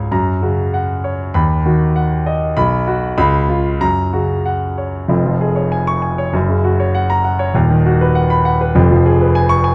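Set in a moderate recital-hall reverb with a dark production, this short cut from a longer work places a warm, polished grand piano up front and present, spanning from D#1 to C#6. It is a heroic, sparkling virtuoso classical study for solo piano in 2/4, played with a flexible rubato feel. The opening idea gives way to a second section at 5.1 seconds, with harmony that circles among F#, B/D# and C#7 chords.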